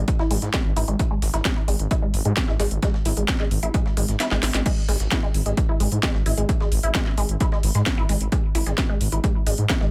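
Intense and dark, this driving peak-time techno cut runs at 131 BPM in a straight 4/4, taken from a longer piece and held in a dry, close space with little reverb. A thick, menacing detuned saw bass sits up front from the start, its beating low end breathing with sidechain pumping, while a squelchy, resonant blip pluck carries the riff above it through phaser, tube saturation, lush chorus, digital delay and its own sidechain pumping. A filter sweep moves across the synth arpeggio for the whole passage, which rests on a G#5 chord. The punchy electronic kick drives from 0.1 s, joined by a techno kit with a cracking snare, smooth pumping hats and crash cymbal, plus a gritty, compressed breakbeat sampler kit tucked in the background with high-passed snare and hats. At 4.2 s the kick drops out for a drum fill, returning at 4.7 s to push the groove onward.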